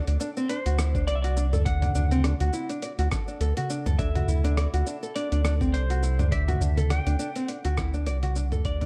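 A lightly swung groove of gritty, overdriven sampler-style kit with hi-hat, rim click, shaker and toms, a thumpy kick from 0.9 s and a crisp darbuka in the background carries this peaceful, earthy organic downtempo excerpt, as a round, deep analog bass sits up front beneath fingerpicked nylon-string guitar arpeggios and a clean lap steel melody played with slide and volume swells, both guitars touched with digital delay, while a pure, ringing quartz singing bowl enters at 4.0 s before the dark, lightly reverberant mix fades out from 7.1 s.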